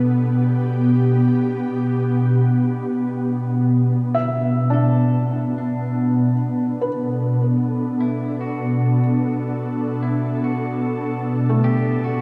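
An airy pad sits up front through the whole of this ambient excerpt, holding slow, sustained chords through an ensemble chorus and its own reverb. It has a gentle, detuned shimmer. The mood is spacious and reflective at 74 BPM in a straight 4/4, in B minor, moving from G/B to Bm7 at 3.9 seconds. A very quiet, warbling analog drone hums beneath the opening until 4.0 seconds, and then a soft, felt-muted upright piano takes over with intimate, short-sustained arpeggios that trail into a diffuse delay. From 4.7 seconds a clean electric pedal steel guitar fades in with a quiet, sliding melody, also carried by delay. A lush hall reverb and a cassette-tape character give the whole recording a hazy, vintage depth.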